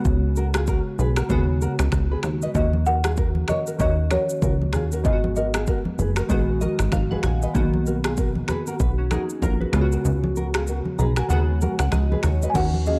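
Hypnotic and sultry, this afrobeats excerpt moves at 96 BPM with a swung 16th feel over a Db7sus4, Ebm7, Abm7, Bmaj7 progression, anchored by a punchy, funky analog bass and an up-front electronic drum kit with a deep kick, rim clicks, finger snaps, shaker and crash. Glassy digital keys with chorus carry the accompaniment and add fills, while a thumb-plucked nylon-string guitar riff sounds through delay and bright, close congas join in the background at 2.5 seconds. A woody, rustic marimba takes the melody from 2.6 to 7.2 seconds and returns briefly at the end, the kick drops out at 10.1 seconds, and a mellow, detuned pad slips in just before the cut in a dark, dry mix.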